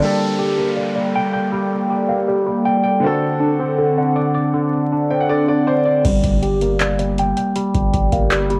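Hip hop trap in a half-time feel, melancholic and menacing, this opens with a clear concert grand piano and a worn, slightly out-of-tune tine electric piano playing arpeggios through phaser and tape echo, joined moments later by a warbling, nostalgic pad sustaining dark chords in the background, the three keyboard parts colored by cassette tape, while an electronic downlifter sounds beneath them. At 6.0 seconds, as the piano and pad fall away, a booming analog drum machine with deep kick, metallic hi-hats, handclaps and crash cymbal lands up front alongside an impact and a long, sine-toned 808-style bass on G1. The lo-fi home-cassette sound carries vinyl crackle and light digital reverb.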